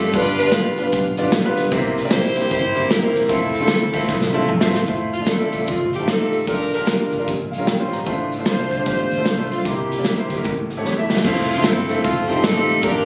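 Captured on a phone in a club-like room with light reverb, this hopeful, uplifting slice of swung uptempo gospel sets a tight, up-front saxophone section with jazz vibrato over a clear grand piano that adds a fill near 7.3 seconds, a round, foam-muted fingered electric bass and a studio drum kit with a punchy kick and fills, while an airy pan flute with a chiffy attack and tape echo joins the melody from 5.1 to 10.5 seconds.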